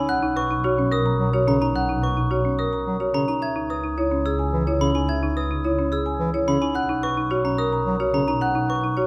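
Urgent and hypnotic, this short fragment of minimalist classical pattern music, cut from a longer piece, moves in a straight 3/4 over a Bmaj7 harmony that shifts to C#m7 and back. A marimba played with hard mallets carries the melody in a dark, smooth, percussive voice, while a folk marimba with medium-hard mallets spins arpeggios underneath, its hardwood bars sounding woody, dry and rustic with a boxy small-room character. Above them, a glockenspiel with hard plastic mallets adds its own bright, sparkling, bell-like arpeggios that ring out high in the texture. A bowed double bass section sits up front and close, lush and expressive with vibrato, anchoring the low end with a warm studio presence. From 1.2 s to 8.2 s, a clear bass clarinet in a classical style adds accompaniment in the background. A moderate recital hall reverb surrounds the whole ensemble.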